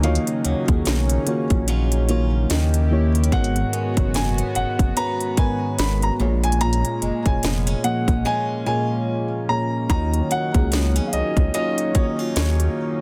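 Contemporary R&B at 73 BPM in Eb minor with a swung 16th feel, moody and late-night, cut from a longer piece. A grand piano with audible action noise carries the high melody over a round, warbling FM electric piano with chorus, a shimmering pulse-width pad that pumps against the sidechain, bright boxy picked acoustic guitar arpeggios, and a rubbery, bouncy square bass sitting up front. A trap kit with a hard-clipped kick, sharp snare and crisp hats drops out from 8.3 to 9.9 seconds, returning as the chords come back to Ebm9, all in a dry, dense, heavily limited modern master.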